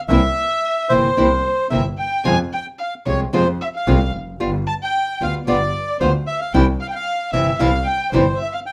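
This tango, cut from a longer piece and lasting under nine seconds, carries a passionate, melancholic mood with a rubato feel in 4/4. A reedy, dark and smooth bandoneon sings the melody up front. A single bowed violin adds an expressive second line with vibrato and portamento. A fingerpicked nylon-string guitar, small and acoustic with a warm tone, sits close in the accompaniment, while a bowed double bass, clear and intense with light vibrato, holds the low end up front. The harmony moves from C7 through Fm and G7 before settling on C at 6.5 seconds, all framed by moderate studio reverb.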